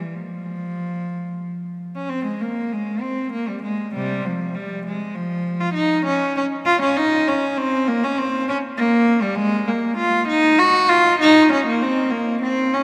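A solemn, introspective baroque-style suite movement for unaccompanied cello, heard as a short portion of a longer piece, moving in a rubato 6/8 at about 66 BPM by the dotted quarter and turning from F minor to Bb minor at 9.4 s. A single bowed cello carries the whole line from C3 to Gb4, its rich, reedy gut-string tone in period style placed close and up front, with a new section beginning at 2.1 s. A cathedral reverb with a 4.5-second decay surrounds the playing, lending a resonant, spacious air.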